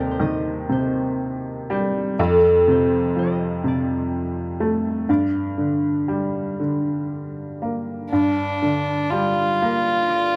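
This Celtic folk slow air in G minor moves at a rubato 40 BPM in 6/8, carrying a longing, mournful mood through a brief passage cut from a longer piece. A thumb-plucked concert harp sings the melody from the start, its ringing acoustic tone sitting in a modest upper range. Beneath it, an upright piano gives accompaniment with a woody, boxy, slightly detuned character, its short sustain and worn feel placed up front in the mix. The harmony passes from Cm/Eb to F and settles on Gm. At 8.1 seconds, as a new section begins, a single bowed fiddle joins close and up front with a second line, its gut-string tone reedy and airy. Light reverb and a dark, warm production wrap the whole recording.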